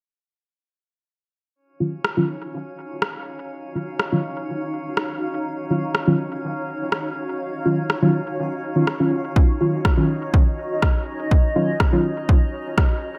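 A steady straight 4/4 pulse at 123 BPM drives this deep, cavernous dub techno excerpt in Eb minor, where a dark, nasal chord stab with chorus, phaser, cassette tape, dub echo and a filter sweep sits up front over an Ebm9 harmony, joined by a layered electronic rim click, a glassy drifting-overtone texture, a blurred granular cloud pad, and a dry, punchy kick that arrives at 9.4 s, all set in a moderate plate reverb with bright 1980s-style digital production.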